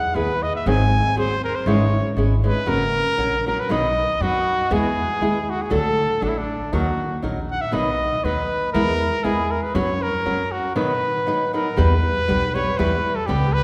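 A lightly swung two-beat pulse carries this festive, romantic mariachi fragment, cut from a longer piece, as a clear, soft-attacked trumpet sings a classical-style solo melody with light vibrato up front, a warm, fingerpicked flamenco guitar supplies acoustic accompaniment, and a woody pizzicato upright bass on steel strings holds the low end, the whole group set in the wet reverb of a church or concert hall before the harmony turns to E minor at 11.8 seconds.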